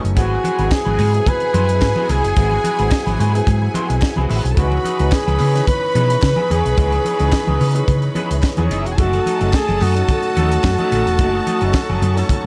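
Sultry and danceable, this disco excerpt rides a straight 4/4 groove from a tight funk drum kit, with a high-tuned snare and tight kick sitting up front beside a dark, round, hollow-body fingered electric bass. A close-miked flugelhorn carries the melody with a soft attack, light vibrato and scooped notes in a jazz style, while a smooth studio violin section bowed with even vibrato adds a lush second line from 0.2 seconds. Underneath, a grand piano offers a warm accompaniment and opens with a fill, and a picked electric guitar at the edge of break-up sits in the background through wah and chorus. A clear, biting symphonic string section holds very quiet sustained chords, as the harmony moves from G#7alt through C#m9 to F#m69. Damped, thick-skinned congas with a compressed, saturated tone and a very quiet, crisp group handclap fill out the percussion, all set in light reverb and small room ambience.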